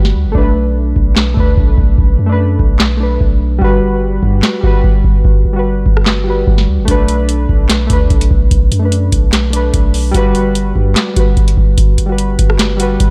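Dark, menacing trap hip hop at 147 BPM in a half-time feel in B minor, cut from a longer piece, where warbly, detuned lo-fi synth keys with chorus and a low-pass filter trace Bm7 and Gmaj7 over a deep, decaying sine-like 808-style bass and a dry, booming analog drum machine up front with a tonal snare, handclaps, rim clicks and metallic hi-hats that drop out from 0.3 to 6.9 seconds.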